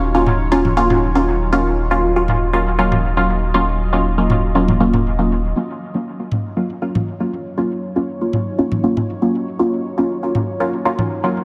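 Dub techno with a nocturnal, hazy mood, this short cut rests on a single chord held by a deep, moody pad whose slow attack and long release are softened by chorus and its own reverb. Up front, muted, detuned chord stabs with a filter pluck pass through phaser and dub echo, while a round sine sub bass sits beneath them until 5.5 seconds and tape-toned analog electronic toms enter at 0.3 seconds. Light digital ambience frames the whole.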